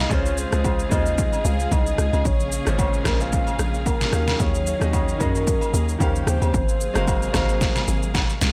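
Deep and hypnotic, this amapiano excerpt at 112 BPM in Eb dorian swings gently as a soft, round synth lead with chorus, phaser and delay carries the melody over bright, brilliant grand piano chords, dark, distant strings pumping beneath, a hollow, bouncy log drum bass, a punchy deep house drum kit that enters at 0.1 s and closes with a fill at 7.6 s, and agogo bells and woodblock tucked in the background, all moving from Dbmaj7 through Bbm9 and Ebm11 to Eb13 and Ab13.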